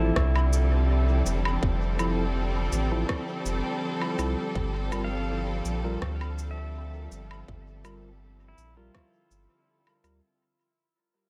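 Lush, bright bowed strings hold sustained chords up front in this meditative, spacious ambient dub piece at 82 BPM in G dorian, moving from Fmaj7 to Gm7 at 4.6 seconds over a deep, round sub bass, while a twangy pedal steel guitar plays arpeggios and a tine electric piano adds stabs in the background, both trailing dub echo alongside a tight electronic kick and an echoing rim click, woodblock and shaker, all under light reverb as the excerpt fades out across its 10.4 seconds.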